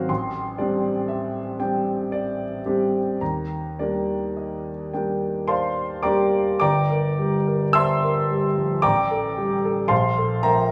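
Wistful and hazy, this brief fragment of impressionist classical solo piano drifts in a slow, rubato 3/4 between 51 and 62 BPM, set in G dorian and tuned to A4 = 441 Hz. A concert grand carries everything alone from 0.0 to 10.7 s, its clear tone sitting up front with deep bass and long sustain across a span from G1 to Bb6. The opening passage moves from Am7 to Ebmaj7, and at 6.6 s the music shifts into a new passage built on Gm6, then Gmadd9/A and a closing Bbmaj7sus2 at 9.9 s. The piano sounds natural, surrounded by a wet recital hall reverb with a 1.4 second decay over a touch of small room ambience, which adds to the music's hazy atmosphere. Because it is cut from a longer piece, the fragment feels like a passing glimpse rather than a complete statement.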